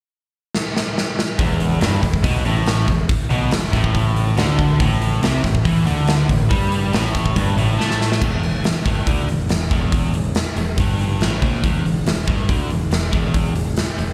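A huge, punchy arena drum kit with bright cymbals opens this confident, sunny classic rock excerpt from a live club gig with a fill at 0.5 seconds, before a biting overdriven guitar, a crunchy, bright second guitar with slapback echo and a growling, overdriven bass kick in at 1.4 seconds to drive a riff over E5 and A5, the crunchy guitar dropping out at 8.2 seconds as the band moves to Em7.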